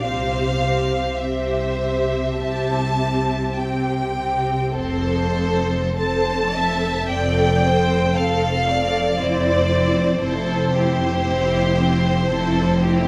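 A slow, romantic classical movement for string orchestra, this brief passage cut from a longer work moves at a gently rubato 47-60 BPM in 4/4 with a serene, warm mood. A lush, up-front violin section carries the melody with a smooth, even line and rich vibrato, while a second violin section sits more distant and focused beneath it. The violas fill in the accompaniment close by, soft in attack and expressive, with touches of portamento. Cellos and double basses enter at 0.1 seconds to anchor the bass, the cellos rich and close, the basses woody. The harmony rests on C, shifts to F at 4.8 seconds, and settles on C over F at 9.2 seconds, all bathed in the generous reverb of a recital hall.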